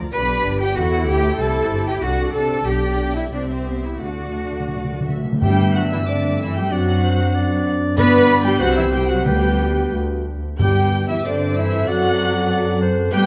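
Lively and spirited, this quick classical-period orchestral movement in 2/4 flows with a rubato feel: a violin section sings a smooth, vibrato-laden melody over a lush viola accompaniment, while a chamber violin section adds an intimate, sul tasto second line and cellos and up-front double basses bow a rich, focused bass. Round, soft-mallet timpani on calf heads enter at 4.0 s with a fill that leads into a new section at 5.4 s, where a bright, close-miked solo clarinet and an airy, very quiet flute section add second lines as a mellow French horn section holds sustained chords. The orchestra sits in a moderate scoring-stage reverb until the cut at 13.3 s.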